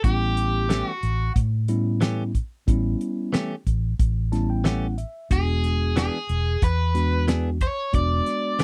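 A swaggering, soulful straight-eighth soul blues opens with a damped 1970s drum kit, its fat snare, tight kick and hi-hat sitting up front alongside a dark, round, foam-muted electric bass that sounds amped. A mellow tine electric piano supplies clean accompaniment throughout, and a warm, overdriven electric guitar plays a brief picked melody that drops out at 1.3 seconds. Soon after, a bright, twangy clean guitar recorded direct enters with compressed, picked stabs. The electric piano takes a fill at 4.0 seconds, and the overdriven guitar returns at 5.3 seconds as the harmony moves from A7 to E7. The dry, close studio sound gives this short fragment of a longer piece an intimate, 1970s character.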